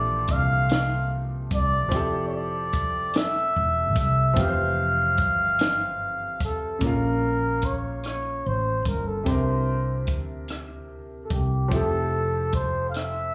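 A breathy, whispered flugelhorn carries the melody from the start in a jazz style with scooped notes, alongside a clear, slightly worn grand piano (both touched with slapback echo) and a round, woody fretless electric bass, before a compact cocktail drum kit with a high-tuned snare, punchy kick, rim clicks and hi-hat enters at 0.3 seconds. This slow, intimate and sensual six-eight R&B piece in F major moves at 49 BPM, shifting at 6.8 seconds from lush major-ninth harmony to a darker Bb minor passage that resolves back to Fmaj9. Cut from a longer live club performance heard through the venue's PA, it has small-room ambience and a faint mains hum.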